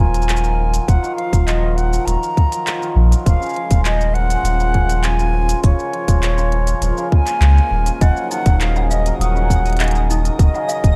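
A bright wooden flute carries the melody through this autumnal, wistful folktronica excerpt, its airy, vibrato-touched tone echoed by a delay. Beneath it, a hammered cimbalom rings out shimmering arpeggios, also with delay, while a reedy, nasal hand-pumped harmonium breathes sustained chords in the background. A deep, round sine sub bass sits up front alongside a tight, tape-toned electronic kick that enters at 0.9 seconds, with an organic electronic kit adding crisp hats, handclaps and shaker from a larger room. A band accent lands at 7.4 seconds, and at 8.0 seconds a clanky, slightly out-of-tune toy piano adds a second line with delay, joined shortly after by a sparkling granular FM texture with its own reverb glittering faintly behind everything. The whole excerpt has a dark, warm production in a small room, moving through minor harmonies in a steady, straight four.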